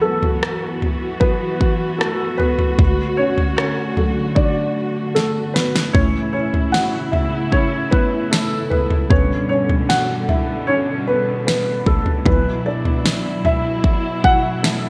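A longing, emotional pop ballad at 76 BPM, cut from a longer piece, in which a dark, mellow baby grand piano with short sustain and analog chorus carries the lead over a soft-attack, woody studio string section holding bowed chords with vibrato, while an electronic, layered pop drum kit with a punchy kick, fat snare, rim clicks and toms under gated reverb plays a fill at 5.2 seconds, all within a moderate plate reverb and bright 1980s-style digital production as the harmony moves from Esus2 through D, A and G.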